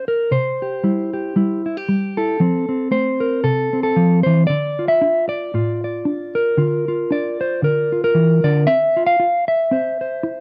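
Pastoral and hopeful, this brief folk passage cut from a longer piece features a lone mellow electric guitar, clean, dark and fingered, sitting up front in light reverb as it moves with a gentle swing through C, F, Dm, Bb/D and a Csus4 that resolves to C near 9.7 seconds.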